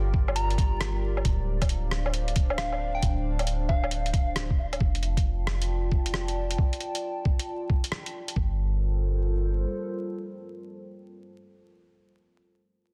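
A muffled, thumpy electronic kick drum sits up front in this melancholic, ghostly future garage excerpt, joined by a pitched-down, tape-warm sampler-style kit of hi-hat, rim click and woodblock, with soft clipping on the snare, over a swung 16th-note feel. A deep, round 808-style bass and a moody analog pad of detuned saw and square tones, treated with chorus and phaser, both pump against the sidechain as the chords move from Gm7 through Dm7 and F69 to Gm11. A gentle, keys-like FM lead with vibrato and dub echo appears from 0.4 to 4.3 seconds, all framed by light reverb, vinyl crackle and a dense, heavily limited master.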